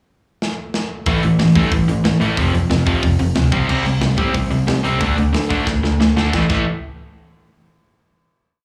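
A short, complete punk rock piece with an urgent, raw edge, heard as a live gig through a club PA with small-room ambience and little reverb. A tight metal drum kit opens with a pickup fill from 0.4 seconds, its medium-tuned snare, tight kick, hi-hat and crash sitting mid-forward with a rolled-off top in a fast punk groove. At 1.1 seconds two crunchy overdriven guitars come in with palm-muted eighth notes and slapback echo, one bright and up front, the other warmer and tucked into the background. An overdriven picked electric bass enters alongside them with a bright, direct tone, driving eighth notes under the guitars. The verse moves through A5, F5, C5 and D5, and a second drum fill leads into a closing A5 chord.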